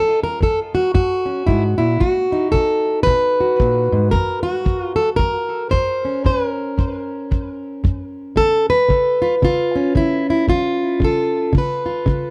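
Swaggering and laid-back, this short cut from a longer acoustic country blues piece moves at 113 BPM in 4/4 with a loose swing on the eighth notes, centered in F# major. A fingerpicked, plugged-in jumbo steel-string acoustic guitar carries the melody from start to finish, its full-bodied tone sitting up front with audible finger squeak and a touch of tape echo, ranging from F#2 up to B#4. A kick drum enters at 0.4 seconds, dark and smooth with a tight, rolled-off thump and a brushed quality that stays beneath the guitar. The harmony moves from F# to B, returns to F#, then reaches C# at 8.4 seconds. The sound is dry and close, in the manner of a 1970s studio session, with a small room ambience around the pair.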